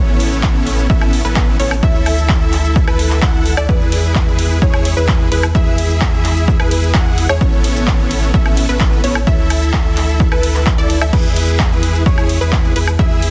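Triumphant and euphoric, this festival progressive house passage drives at 129 BPM in a straight 4/4, centred on A major and moving through Aadd9, Dsus2, E and C#m/E before circling back. A huge, thick supersaw carries the riff from the first second, its detuned sawtooth stack compressed and sustained with vibrato, delay and sidechain pumping. Beneath it, a deep, saturated sub bass holds down the low end with a mellow, sustained tone that also pumps to the sidechain. Tucked into the background, a lush unison pluck spins wave-folded arpeggios with delay. The big-room drum kit enters at 0.1 seconds with metallic hats, crash and ride cymbals, handclaps, shaker and woodblock, and a punchy, overdriven electronic kick lands at 0.4 seconds as the loudest element. Light reverb surrounds a dense, heavily limited modern master in this 13.3-second cut from a longer track.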